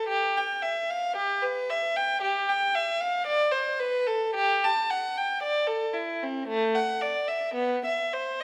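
A lone violin carries this grave, solemn baroque-style suite movement, its dark, reedy gut-string tone carrying a smooth top as it moves between A3 and A5 in G major, tuned to A4 = 445 Hz. The bowed line unfolds at a slow 56 BPM in 4/4 with a rubato feel, played in period style by one player placed up front. A wet recital hall reverb with a 1.7 s decay surrounds this short 8.4-second excerpt, lifted from a longer piece.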